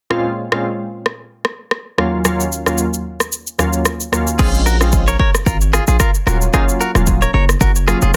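A punchy, heavy 808-style bass with a sine body and a noise layer drives this smooth, sultry afrobeats excerpt in Bb minor at 112 BPM, arriving at 4.4 seconds alongside a clean, twangy electric guitar riff recorded direct and colored with digital delay. From the opening, glassy, detuned digital keys carry the Bbm7 to Ebm7 accompaniment with chorus, tremolo, plate reverb and a filter sweep, while an electronic afro-pop kit with a deep kick, rim click, shaker and crash sits up front, its snare softly clipped. The kick drops out from 3.3 seconds until the bass enters, and the whole excerpt lands as a dense, heavily limited modern master with a light room reverb and a gentle 16th-note swing.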